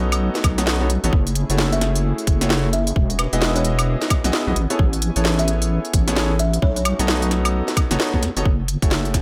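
A swung two-step garage rhythm at 131 BPM drives this soulful, late-night UK garage excerpt in F# dorian, with a tight electronic kick and a garage kit of crisp hats, cracking snare and woodblock up front, a deep, dark wobble bass thickened by chorus, bright grand piano stabs through a low-pass filter and tape echo, a very quiet, warbling analog pad holding sustained chords, and a buzzing, woody kalimba melody in the background from 1.7 to 6.8 seconds, all over chords moving from B7 through F#m7, Emaj7 and Amaj7 to a band accent at 8.0 seconds.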